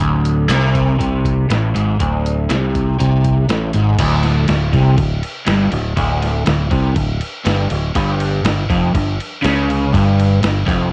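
Driving and raunchy, this short cut from a longer blues rock power trio piece with a southern rock edge moves at 121 BPM in a straight 4/4, tuned slightly sharp with A4 at 441 Hz. A crunchy, overdriven electric guitar carries the riff in a low register, picked and double-tracked, sitting up front with a phaser coloring its bright tone. Beneath it, a fingered electric bass runs from D1 to C#2, direct, growly and punchy, also placed up front. The drums have a lo-fi, sampler-style character, compressed, pitched down and muffled, with a thumpy kick, a medium-tuned snare, hi-hat and crash cymbal that sound re-recorded in a large room. The harmony opens on D5, shifts to D7sus4 at 4.0 seconds as a new section begins, and moves to Fsus2 at 8.0 seconds, all under a light reverb.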